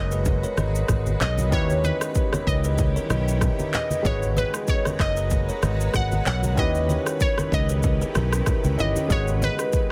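Opening at once on a round, punchy fingered electric bass, a background grand piano and a glassy, detuned wavetable pluck that carries the melody through chorus and delay, this hypnotic, smooth afrobeats excerpt in G# minor moves at 95 BPM with a light swing. A woody kalimba riff rings with its own delay, a blurred granular pad holds G#m9 and D#7b9b13 chords in built-in reverb, an electronic drum kit with deep kick, handclaps, rim click and shaker sits up front, and very quiet, close congas add dry, thin-skinned color, all pressed into a dense, heavily compressed radio sound.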